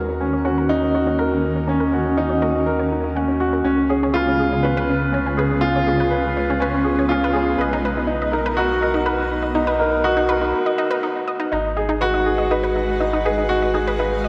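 A dreamy mix soaked in a lush hall reverb opens this melancholic, cinematic piece of piano and strings electronica, cut from a longer track and moving at 122 BPM in a straight 4/4. A grand piano sits up front playing a riff through analog delay, while a cloudy, blurred granular pad holds sustained chords with its own built-in reverb and analog chorus. Beneath them, a deep, round sine sub bass supplies a mellow foundation. Above, a detuned sawtooth pluck spins chorused arpeggios through analog delay. The harmony moves from Ebm7 through Db7 and Bmaj7 as a build-up unfolds, with filter sweeps on both the pad and the arpeggios. A brief break at 10.5 seconds leads into a drop at 11.5 seconds, where the chords settle on Abm7.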